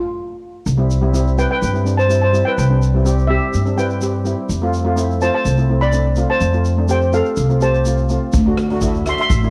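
A shimmering lead steel pan, played with medium rubber sticks, opens this carefree, bouncy calypso alone at 125 BPM in C major before a growly, woody pizzicato upright bass and a grainy vintage tube shaker join at 0.7 seconds, followed at 0.8 seconds by a dark, smooth double-seconds pan with a cassette-tape color, and an airy street-band drum kit with a boomy kick, hi-hat and rim click arrives at 8.3 seconds in this homespun cassette recording cut from a longer piece.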